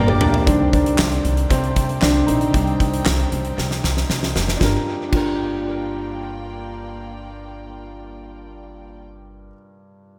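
Bittersweet and driving, this piano-driven pop piece in G minor moves at 116 BPM in a straight 4/4, cut from a longer work, with a present, polished grand piano up front carrying a solo from 0.5 to 4.6 seconds over Cm before the harmony shifts to Gm7, its dub echo feeding an echo-heavy mix with light reverb and studio ambience. A huge arena drum kit with a fat snare, punchy kick, handclaps, hi-hat, toms and crash cymbal plays fills at the opening and again before it stops at 5.3 seconds, also washed in dub echo. Beneath them a woody, thumpy pizzicato upright bass holds the low end while a bowed string section with light vibrato and a soft attack sits intimate and smooth in the background until 9.0 seconds.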